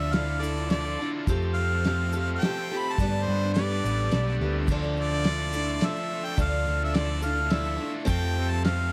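Folk rock and heartland rock in a reflective, wistful 3/4 at 106 BPM in D dorian, where a bright, close-miked harmonica with light vibrato and slapback echo carries the melody up front over picked steel-string acoustic guitar, a double-tracked overdriven garage guitar riff, a round hollow-body electric bass, a very quiet gritty tonewheel organ holding sustained chords through a slow rotary speaker, a cloth-damped thuddy drum kit with fat snare and dark cymbals, and a faint grainy tube shaker, all cycling through Dmadd9, Fadd9 and Gadd9 in a dark production with light reverb.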